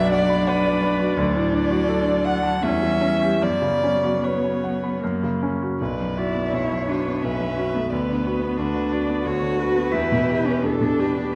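Heard through a wet concert-hall reverb with a dark, warm finish, this slow romantic movement for piano quartet in B minor unfolds elegiac and solemn. In 3/4 at 72 to 91 BPM, it moves with a rubato feel, and the passage is cut from a longer piece. The bright concert grand sits up front as the accompaniment, brilliant and polished, with deep bass and short sustain. A single bowed violin carries the melody with a smooth, even vibrato tone, over a focused cello second line and a viola filling in the accompaniment. All four play throughout, with the strings sounding rich. The harmony moves from B minor through D and a diminished chord to a suspended, then resolved, F-sharp, before a new section at 5.8 s returns to B minor and turns toward E minor.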